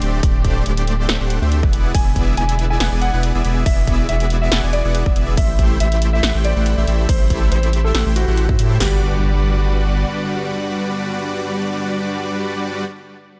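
Lush and playful, this future bass passage, cut from a longer piece, runs at 140 BPM in 4/4 with a half-time feel and a light swing on the sixteenths, centered in G major. It opens straight into the drop, where a huge, detuned unison supersaw carries the riff over a deep, saturated sub bass that sits up front, both pumping against the sidechain. Two layered electronic dance drum kits drive the drop with a punchy kick and snare, crashes and hi-hats, while a very quiet, smooth bowed string section holds sustained chords underneath with vibrato. From 1.9 seconds a dark, mellow grand piano adds a delayed melody that also pumps with the mix, moving through chords from D7sus4 to E7 and Am7. After the drums fall away near 8.9 seconds, the music settles onto Gmaj7, with a faint electronic impact, the strings, synth and piano ringing on in a digital ambience, and the sub bass dropping out at 10.1 seconds.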